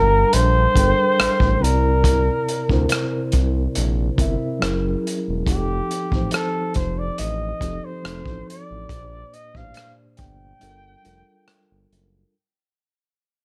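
A flugelhorn carries the melody with vibrato, a soft attack and a jazz-style solo voice that sits up front yet sounds distant and roomy, set in a sultry, introspective R&B and neo-soul groove at 70 BPM in 4/4 with a light 16th-note swing. Underneath, a mellow, clean tine electric piano plays the accompaniment as if through its built-in speakers, moving through rich chords such as Gm9, C9, F#9, F7b9 and Bb6 in G minor, tuned to A4 = 437 Hz. A smooth synth bass, blending sawtooth and triangle tones with a ring-modulated edge, glides between notes with portamento and vibrato and holds sustained lines up front. The crunchy breakbeat kit enters at 0.3 seconds with hi-hat, tight kick and rim click, its gritty, saturated studio-room sound pushed forward with a rolled-off top. Light reverb surrounds the parts, and this cut from a longer piece fades throughout, easing into a break at 10.6 seconds that arrives on Gm7.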